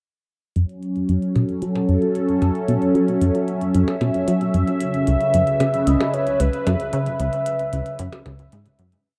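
Expansive and cosmic, this short ambient piece of sequencer-driven space music moves at 113 BPM in a straight 4/4, set in F# minor and bathed in a huge, echoing reverb that suggests a vast space. A swirling, detuned sawtooth pad, treated with phaser and chorus, sits up front with slow-attack sustained chords from 0.6 seconds, shifting from F#m7 to C#m7 at 4.8 seconds. Beneath it a punchy, funky analog bass, built from sawtooth, pulse and triangle waves with ring modulation, plays a plucky, decaying five-step sequence that drifts against the bar, its filter sweeping throughout and its sound thickened by lush chorus and delay. Light electronic percussion ticks along with clicky closed hats and high conga blips, tape-warm and re-recorded in a small room, fading in from 0.6 seconds with a trail of delay. At 4.8 seconds a mellow, round, horn-like synth lead enters with soft-attack call phrases, touched with vibrato, chorus and delay, before the whole piece fades out from 6.2 seconds.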